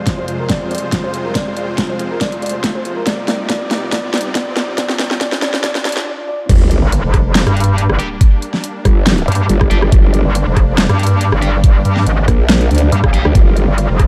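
A growling, formant-filtered bass crashes in for the drop at 6.5 seconds in this heavy, chaotic wobble dubstep excerpt, joined at 6.8 seconds by a bright, metallic FM wobble bass, both chorused and up front, set at 140 BPM in a swung half-time feel in G phrygian. Before that, a dark, boxy concert grand piano carries the melody through tape echo over lush, detuned supersaw chords pumping in the background. A very quiet riser and sub drop sit under the build-up, with its drum fill, filter sweep and brief break. A knocking electronic kick and a dubstep kit with a huge snare, both overdriven, drive the piece, and from 8.0 seconds a tight, distorted, double-tracked electric guitar adds picked stabs with tape echo.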